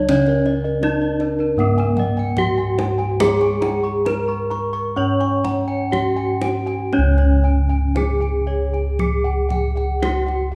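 This Javanese gamelan piece in C# pelog barang opens with its bronze instruments sounding together. A dark, smooth metallophone carries the melody, struck with a horn mallet, its paired tuning producing shimmering beats. Beneath it, bossed gongs hit with padded beaters hold the bass, close-miked, round and full, while a drier metallophone played with a wooden mallet adds accompaniment until it drops out at 6.9 seconds, where the second section begins. High arpeggios come from a bright, ringing metallophone alongside a set of mellow, soft bossed gongs, and a deep kendang with a vintage, band-limited tone keeps time in 4/4 at a ceremonial 58-84 BPM. A moderate recital hall reverb surrounds this short cut from a longer piece, giving it a shimmering glow.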